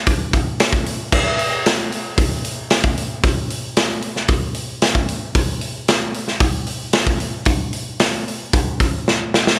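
A big rock drum kit drives this short cut from a longer piece, a solo drum part in a straight 4/4 at 113 BPM. The mood is driving and gritty, with a punchy kick, a medium-tuned snare, hi-hat and crash cymbal carrying the groove. The kit sounds acoustic and natural, recorded in a studio room and placed up front, with bright cymbals and a light reverb around it. The drums play from 0.1 seconds through a single section, and a drum fill at 9.1 seconds closes the passage at 9.6 seconds.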